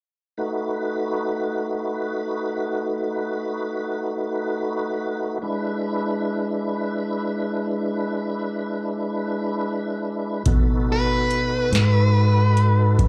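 A gritty, laid-back slow blues in a straight 12/8, cut from a longer piece and heard as a live gig through a venue's PA with club reverb. A tonewheel organ opens alone at 0.4 seconds, holding sustained chords that move from B7 to E7, its full, lightly overdriven tone carrying chorus vibrato, key click and a slow rotary speaker. At 10.5 seconds the harmony returns to B7 as a fingered electric bass, direct and amped, joins a booming analog drum machine with a deep kick, crisp snare and metallic, tape-tinged hats. Shortly after, a dark, smooth lead guitar steps up front with an overdriven, picked tone and slapback echo for a brief solo that sits on a single high B. The organ stays prominent throughout, giving the sound a thick, swirling bed beneath the late-arriving band.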